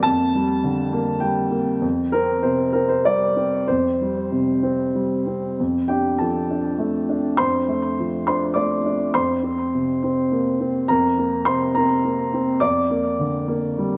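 Hopeful and peaceful, this short neoclassical minimalist piano piece moves in an unhurried 3/4 at roughly 92-105 BPM, with a rubato feel that lets the time breathe. A single upright piano plays alone throughout, with a woody, open tone and long sustain, placed up front and spanning F2 to D6. The harmony drifts through Gm/F, Fsus2, Dm/F and Bbsus2/F over a steady F in the bass, settling back on Gm/F at 12.6 s. The opening phrase returns at 5.6 s and carries through to the close at 14.0 s of this fragment from a longer work. A wet spring reverb and small room ambience surround the sound, and a cassette tape character along with a tuning of A4 = 438 Hz gives it a softly worn, intimate quality.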